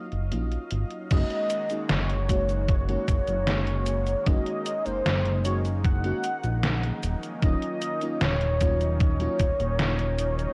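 Vaporwave with a woozy, melancholic air, this excerpt drifts in straight 4/4 on an Ebm9 chord with a cassette-tape haze and light reverb. A thick, warbling unison pad opens the recording with bright, detuned sawtooth chords, joined almost at once by a glossy, chorused synth bass sitting up front and an overdriven, detuned 8-bit drum machine playing cabasa, crash, hi-hat and a medium-tuned snare through gated reverb. An FM electric piano layered with a soft pad adds dark, dreamy accompaniment with a lush chorus. At 1.1 seconds a velvety synth lead enters with vibrato, chorus and tape echo, carrying the melody in a high register. A thumpy, overdriven electronic kick arrives at the same moment, sitting prominently in the mix and dropping out at 9.6 seconds.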